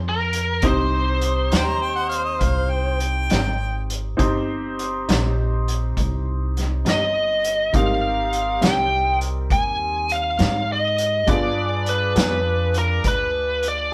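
A biting, overdriven lead guitar carries the melody up front through this mournful, soulful slow blues in C minor, moving in a straight 12/8 at 68 BPM, with a vintage drum kit giving a fat snare and boomy kick in a pumping small room and a woody pizzicato upright bass anchoring the low end. A bright, slightly detuned upright piano with audible action noise and long sustain fills in the chords as they move from Fm to Cm, Abmaj7 and G7b9, while a dark, slightly broken-up electric guitar with tremolo sits in the background. A close-miked harmonica with light vibrato and scooped notes adds a brief second line from 1.5 to 3.9 seconds, all heard as a band playing live in one room with moderate reverb in this cut from a longer piece.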